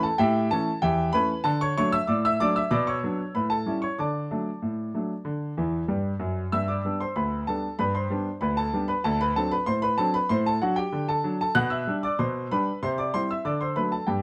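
A clear, worn grand piano plays solo ragtime in a jaunty, playful mood at 95 BPM in a straight 2/4, opening in D major and spanning from D2 to F#6. A short piano fill from 5.6 to 6.5 seconds leads into a new passage in G major that moves through G, D7, C and back to D. The natural-sounding piano sits up front with light reverb, in a brief section taken from a longer piece.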